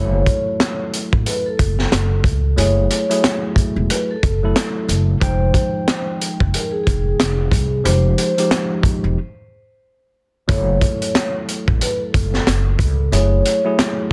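Tough and gritty, this swung boom-bap hip-hop excerpt rides a crunchy breakbeat kit that enters at 0.3 seconds with a punchy kick, a high-tuned snare, rim clicks and hi-hats, saturated and dark with a rolled-off top. Up front beside it, a woody, growly pizzicato upright bass holds the low end, while a worn, slightly out-of-tune tine electric piano with a cassette-tape colour accompanies a mellow, ringing vibraphone melody played with soft mallets and a slow motor vibrato. The harmony moves from F#m9 to Fm9 at 5.2 seconds, and a brief break arrives at 9.2 seconds before the return to F#m9.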